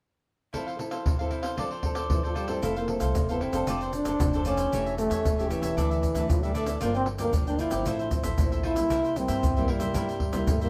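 Samba and choro in F major at 115 BPM, this lively, festive excerpt from a longer piece opens with crisp, picked cavaquinho and thumb-plucked classical nylon-string guitar over a tight, up-front surdo, pandeiro and egg shaker. A breathy, whispered trombone takes the jazz-style solo melody from 2.1 s, mellow and intimate with tape echo, and a woody pizzicato upright bass joins at 2.6 s. The band plays live together in one room with moderate studio reverb, moving through chords such as Fmaj7, A7/E, Gm7 and C7.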